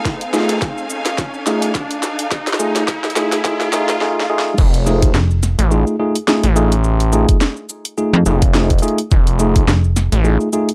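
A playful, gritty glitch hop excerpt opens with an electronic riser and a lush, biting string section pumping against the beat over an F7#9 chord. A knocking, overdriven kick and a layered kit of cracking snare, bright hi-hats, shaker and crash build through a drum fill, while clean tine electric piano stabs pass through a filter sweep and tape echo. The strings drop out at 4.0 seconds, and at the drop at 4.6 seconds a saturated, detuned sawtooth synth bass arrives up front, soon joined by a snappy FM bass with a metallic attack, all in a dry, gritty hardware recording with light reverb.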